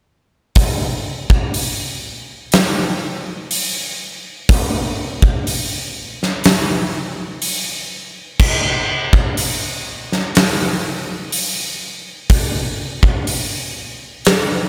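The recording is close and dry, with a polished, up-front acoustic rock drum kit that still carries an airy, big-room character. This is a heavy, brooding metal fragment at a slow 62 BPM in a straight 4/4, cut from a longer piece. The drums play alone from 0.6 to 14.5 seconds, using crash cymbal, hi-hat, kick drum and snare drum. The punchy kick and medium-tuned snare give the slow pulse real weight, while the bright cymbals add a glistening edge above them.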